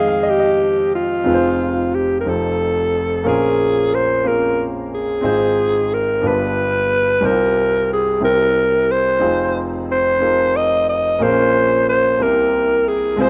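Fervent and soulful, this slow gospel excerpt sits in F minor, moving in a straight 6/8 at 60 beats per minute counted in dotted quarters. A grand piano opens alone for the first 1.3 seconds, its warm, intimate tone carrying long sustain and audible action noise that keep it natural and close. The alto saxophone then takes the melody up front, a breathy, raspy and gritty voice with vibrato and a jazz-style growl, close-miked yet still clear. The piano carries the accompaniment through a churchy progression that moves from Fm7 through F7, Bbm7 and G7 to a Csus4 resolving to C, before circling back through Fm7 and Bbm7 to close on C7 at 12.2 seconds. The sound is a rough home demo with a dull top end, light reverb and the ambience of a small room.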